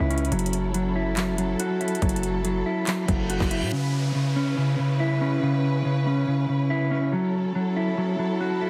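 Dry, heavily compressed and radio-like, this eerie, dark half-time trap cut at 141 BPM in C# minor opens with a clean, fingered electric guitar playing mellow arpeggios through tape echo over woody, sul tasto symphonic strings holding lush bowed chords with vibrato, while punchy sine-toned 808 bass with a noise layer and a trap kit of hard-clipped kick, metallic hi-hats and handclaps hit up front until a reverse cymbal at 3.0 s carries into 3.7 s, where the beat and bass drop away and guitar and strings carry on, moving from F#m7 to C#m7 and back, with a downlifter trailing off by 7.1 s.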